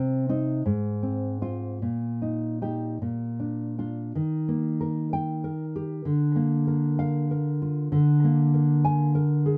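Romantic solo classical guitar in 6/8 and Eb major, wistful and intimate, drifting with rubato at roughly 48-67 BPM counted in dotted quarters. A single nylon-string guitar sits up front, its fresh strings giving a dark, full-bodied, thumb-plucked tone that ranges from Ab2 to Ab5 in a wet booth ambience. The harmony moves from Cm through Fm/Ab and Eb/Bb to Bb, then settles on Eb at 4.1 seconds as a new section begins, closing the cut on Bb7/D.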